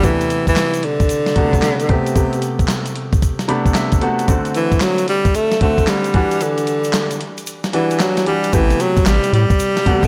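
Bouncy and confident, this new jack swing excerpt cut from a longer R&B piece features an up-front, bright tenor saxophone with vibrato over a clear, polished baby grand piano that adds a fill at 3.2 seconds, a gritty sampler-style drum kit with thumpy kick, handclaps, hi-hat and gated reverb, a grainy egg shaker in the background, and a round, deep analog bass that enters only at 8.5 seconds after a break.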